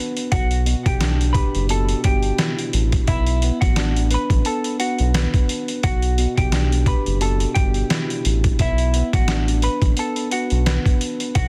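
A clean, hollow-bodied electric guitar carries the melody from the first moment, touched with subtle chorus and tape echo, over a tine electric piano that sounds as if played through its built-in speakers. Within the first second a gritty, pitched-down sampler-style drum kit arrives, with a thumpy kick, medium-tuned snare and hi-hat sitting up front with a tape-warm, compressed character, followed at 0.3 seconds by a round, deep analog bass blending sawtooth and sine tones with a fast attack and long sustain. This is a reflective, dark boom-bap hip-hop fragment in B minor at 87 BPM, with a lightly swung 16th-note feel in 4/4. The harmony moves slowly between Em9 and Bm7, with each chord held for close to three seconds. Digital ambience, vinyl crackle and a dense, heavily limited modern master give the short passage a dusty, tightly packed sound.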